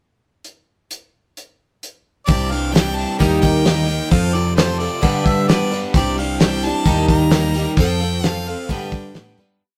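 Folk rock with a heartland rock lean, this short, hopeful and nostalgic piece moves at 131 BPM, opening with a damped 70s drum kit alone for a pickup bar of dry, fat snare and tight kick before the band enters at 2.3 seconds on a verse cycling through Cadd9, Eb, F and G. Up front, a shimmering twelve-string acoustic guitar strums open chord shapes with audible finger squeak, a round, punchy hollow-body bass plays a dotted figure, and a double-tracked overdriven guitar adds crunchy picked arpeggios in the background. A close-miked harmonica carries the melody with scooped notes and hooky motifs, all captured in a rough rehearsal-room sound with moderate reverb before a fade-out from 7.8 seconds.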